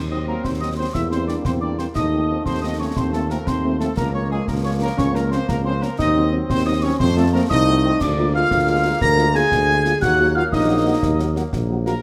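A moderate scoring-stage reverb gives this wind band a polished, roomy sound, while the percussion stays close and dry. It is a stern, resolute military-style march in 6/8, cut from a longer piece. A clear trumpet section carries the melody with light vibrato in a classical style, and an airy, hollow piccolo with a crisp attack plays a second line high above. A solo euphonium adds another second line in the middle register. The mellow tuba sits up front on the bass, the French horn section supplies very quiet accompaniment, and a vintage-toned trombone section holds sustained chords in the background. Concert snare drum, concert bass drum and clash cymbals with dark cymbals enter at 0.4 s, and the harmony moves through diminished and dominant chords before settling on a minor chord at 10.0 s.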